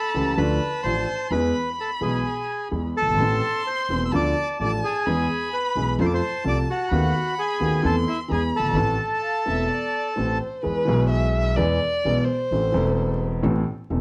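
A rubato 4/4 pulse at 129 BPM drives this passionate, tense tango fragment in A harmonic minor, where a reedy, up-front bandoneon sings the melody until 10.4 s. A close violin, bowed with vibrato and portamento, traces a second line and takes the solo from 10.6 s, over a boxy, warm grand piano and a woody, growly pizzicato upright bass. The whole is bathed in moderate studio reverb and worn, warbling cassette tape with vinyl crackle and drifting pitch.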